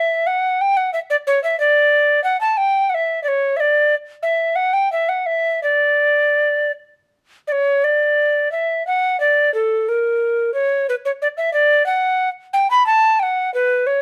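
Dance-like and flowing, this baroque-style fantasia for unaccompanied alto recorder moves in a rubato 6/8 at around 54-62 BPM in D major, tuned slightly high at A4 = 441 Hz. The solo recorder sits up front across its A4 to B5 range, its woody, airy tone marked by a crisp chiff on each attack and a touch of vibrato. Light reverb rounds out this short cut from a longer piece, which spans 14.0 seconds with a repeat of its opening section at 7.8 seconds.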